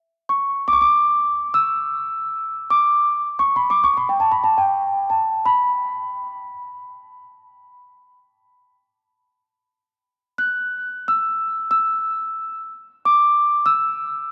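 A large celesta plays alone and up front, its bell-like, ringing notes struck with soft felt hammers and sounding high, between G5 and F#6, from 0.3 s to 14.3 s. This spacious, meditative world piece moves in free time in E dorian, tuned to A4 = 441 Hz, and is a fragment cut from a longer work. A diffuse ambient delay trails the celesta, a wet church reverb surrounds it, and a worn cassette tape sound adds a warbly pitch drift.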